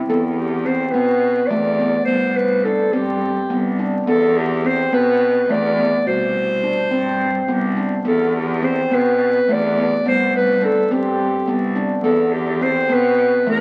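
In a straight, uneven 7/8, this restless, playful stretch of contemporary chamber music, cut from a longer piece, sets ringing nitrided-steel handpan arpeggios, struck with sharp finger strokes, over a single bowed cello holding the bass with clear, focused vibrato. From 0.1 s a solo clarinet with a dark, distant classical tone carries the melody while the harmony alternates between E5 and C5 every two seconds or so. The whole recording sits in a lush plate reverb and has the crackle of a very old 78 rpm record.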